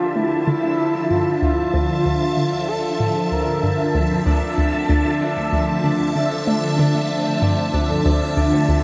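A bright, up-front phased string machine carries this expansive, hypnotic fragment of sequencer-driven space music, its swirling vintage sawtooth chords blooming slowly under ensemble chorus, phaser and shimmer reverb across a sustained D minor harmony. Beneath it, a hollow square-wave pluck bounces through a low riff at 95 BPM in a straight 4/4, its nasal, detuned tone shaped by a moving notch, chorus, cassette-tape grit and analog delay. At the opening, a smooth, expressive portamento lead sings a short melody with vibrato and chorus, dropping out at 3.9 s. At 4.1 s a mellow, fingerpicked concert harp takes its place with ringing arpeggios dusted in shimmer reverb and delay. A filter sweep moves over a synth arpeggio sound throughout, and an enormous 8.9-second reverb soaks the whole dreamy mix.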